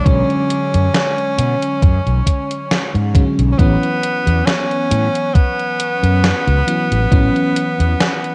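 Vaporwave with a woozy, melancholic mood, moving at a slow, lightly swung pace in this short excerpt cut from a longer piece. A bright tenor saxophone carries the melody up front in a jazz style with vibrato, its low, narrow line trailed by tape echo. Beneath it, an FM electric piano layered with a soft pad supplies lush, dreamy accompaniment, detuned and shimmering with analog chorus, its fast-attack notes decaying over a faint noise layer. A fretless electric bass sits prominently, growly and punchy through tube saturation and chorus, while a thumpy electronic kick drum anchors the groove and a gated 80s digital drum machine adds hi-hat and a gated reverb snare, both drum parts tape-warm and re-recorded in a large room. The harmony drifts from Bm69 to A69 at 3.6 seconds, all wrapped in light reverb and the hazy grain of cassette tape.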